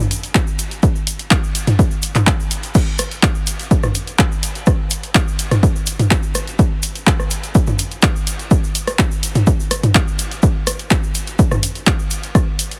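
A straight 4/4 techno groove at 125 BPM is driven by a punchy electronic kick, entering at 0.3 seconds and sitting up front with an analog, small-room character. Around it, an analog drum machine lays down crash cymbal, handclaps, hi-hat, rim click and toms, with sidechain pumping on the hats, toms and cymbals, while a grainy, bright egg shaker rattles in the background of a live room. The mood is dark and cinematic, and this fragment, cut from a longer piece, carries a dry, heavily compressed radio-style sound.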